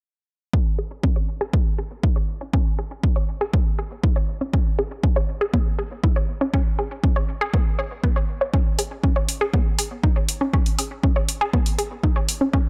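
Melodic techno at 120 BPM in 4/4 with a straight feel, this dark, cinematic excerpt in C# minor is cut from a longer piece. A unison pluck synth carries the arpeggios from 0.5 seconds, its detuned sawtooth tone lush and warbling with a noise layer, a fast attack and short decay, sitting up front between B3 and C#5. Sidechain pumping and tape echo color the pluck, while a filter sweep runs across the arpeggio sound for the whole passage. An overdriven, punchy electronic kick drum holds the beat alongside it, layered and forward in the mix. At 8.8 seconds an overdriven electronic hi-hat joins, also up front, and the parts play on until about 12.6 seconds in a dry space with little reverb.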